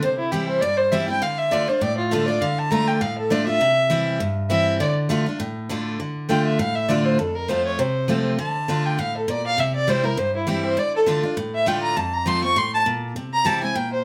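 A dark, woody fiddle carries the melody in this brisk, lonesome bluegrass cut from a longer piece, bowed by a single player with light vibrato and sitting up front in the mix. Beside it, a picked steel-string acoustic guitar on a jumbo body keeps the accompaniment going, its fresh strings giving a bright, full-bodied ring. The tune moves at 201 BPM in 4/4 with a gentle swing on the eighth notes, set in D minor and tuned slightly sharp to A4 = 443 Hz. The harmony circles between D minor and C, then a second section opens at 6.0 seconds, where the fiddle takes a solo through to 14.0 seconds and F enters at 7.2 seconds. A moderate studio reverb lends the pair a rustic, roomy air.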